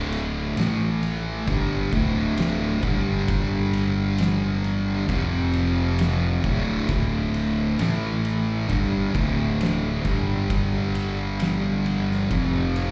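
Two fuzz-drenched guitars open this sludgy, ominous stoner and doom metal excerpt at 66 BPM in D minor, one up front and one in the background, grinding a slow riff through D5, A5, G5 and F5 power chords over a round, overdriven fingered bass. An oversized, low-tuned kit enters at 0.1 seconds in the background, with a boomy kick, fat snare and ride cymbal that sound gritty and saturated. The whole performance comes across as a live gig heard through a club PA, with club reverb around it.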